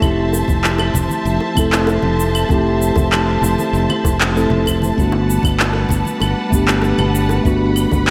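A mellow tine electric piano provides the accompaniment in this short sunset chillout excerpt, its clean tone heard as if through built-in speakers and trailed by a digital delay. Behind it, a symphonic string section holds sustained chords with biting, intense vibrato, moving from Fmaj7 to Gmaj9 at 5.0 seconds and giving the wistful mood a lush, aching glow. A bright, direct fingered electric bass sits low underneath, while a deep analog-sounding electronic kick drum anchors the steady 4/4 pulse. Layered electronic claves, shaker and handclaps carry an overdriven grit and the air of a large room, and very quiet bongos and congas, played with soft hands, enter at 0.3 seconds to add a saturated acoustic texture. A moderate, lush hall reverb and a bright 1980s-style digital production tie the whole fragment together, cut from a longer piece.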